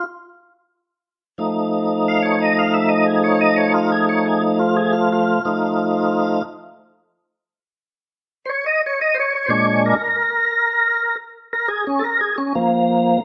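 Soulful and gritty, this short excerpt from a longer blues piece moves at a slow 59 BPM in a 12/8 metre with a straight feel. A tonewheel organ plays alone for the full 13.2 seconds, holding sustained chords that span from Bb2 up to F5. Its tone is full and lightly overdriven, colored by chorus vibrato and a slow rotary speaker, and it sits up front in the mix. After an opening that holds off on any defined chord, the harmony settles on F7 at 1.4 seconds and shifts to Bb7 at 9.5 seconds. A moderate stone room reverb surrounds the organ, giving the sound of a band playing live together in one space.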